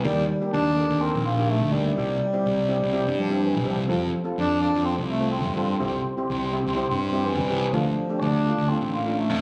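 Calypso at 125 BPM in 4/4, with a light swing on the sixteenths and a carefree, bouncy mood, taken from a longer piece. A bass clarinet carries the melody from 0.1 seconds, its soft attack and classical-style phrasing sounding distant and roomy, like a soloist heard from across the floor. Underneath, a fingered electric bass sits up front, direct and amped with a fuzz overdrive that gives the low end a gritty edge. A double seconds steel pan, played with medium rubber sticks, fills out the accompaniment with a metallic, shimmering tone that sits toward the middle of the mix. The chords move from Eb to C, F, back to C and then Dm over about nine seconds. The recording has the feel of a phone capturing the band in a club, with light reverb and compression.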